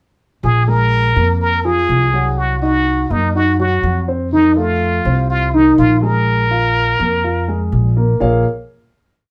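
A plunger-muted trumpet leads this short, complete piece of Cuban son and guajira, its bright wah-wah tone and vibrato carrying a motif-based jazz melody up front until 7.7 seconds. Underneath, a dark, mellow grand piano with audible action noise plays a montuno in octaves, while a woody, thumpy upright bass on gut strings drives a tumbao that anticipates the chords, both carrying on into the final chord at 8.2 seconds and stopping at 8.4 seconds. At a straight 124 BPM, the nostalgic mood sits in a wet studio reverb heard from further back in the room.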